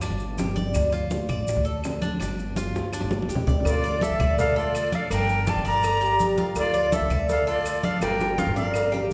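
Latin Cuban son and guajira in D minor at 165 BPM, nostalgic and sultry, this cut from a longer piece opens with a metallic, picked Cuban tres playing arpeggios over a thumpy pizzicato upright bass up front, ringing congas in the background, round low-tuned bongos and cowbell, very quiet woody claves and grainy maracas. At 3.7 seconds a breathy jazz flute with vibrato and a crisp chiff takes the melody up front, while a clear, punchy trumpet with scooped notes carries a second line beneath it as the harmony moves between Dm and Gm7. Drum fills mark the turns, and a wet recital hall reverb fills the sound.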